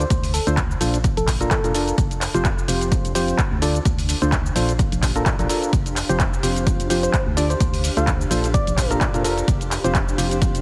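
A percussive organ stab leads this uplifting, feel-good piano house excerpt, its hollow, mellow tone sitting up front with analog chorus, tape echo and sidechain pumping as it carries the riff through the full 10.6 seconds. Beneath it, an organ-like FM bass adds a dark, decaying low end with tube saturation and its own pumping, while a punchy, tape-warm electronic kick drives the 128 BPM 4/4 groove with a 56% swing on the sixteenths. A house drum kit fills out the rhythm with cabasa, handclaps and bright hi-hats in studio reverb. A soft struck synth lead, round and keys-like with chorus and vibrato, sits in the background and plays its melody only at the start and again from 7.0 seconds, and a cloudy, evolving granular pad drifts in at 3.1 seconds. In F major, the chords move through Dm7, Bbmaj7 and Fsus2 under a light digital ambience and a heavily compressed, radio-like finish.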